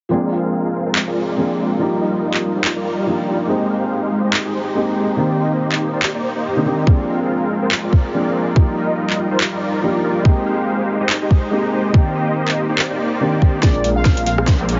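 Playful and euphoric, this future bass excerpt moves in a swung, half-time feel over a looping progression of lush extended chords such as Bb9, Ebmaj9, Abmaj7 and Cm9. From the start, huge, bright supersaw chords carry the riff up front with analog chorus, sidechain pumping, low-pass filtering and tape echo, while a soft, felt-muted upright piano adds mellow, intimate accompaniment under the same pumping and echo. A trap kit of sharp snare, metallic hats, handclaps and rim clicks joins at 1.0 seconds, and a hard-clipped electronic kick arrives up front at 6.9 seconds. At 13.6 seconds a build-up begins with a drum fill, as a thick, detuned saw bass holding Bb1 and a velvety, full-bodied synth lead with vibrato appear briefly, and an electronic riser sits in the background toward the close. The mix has a heavily compressed, radio-like sound with light reverb.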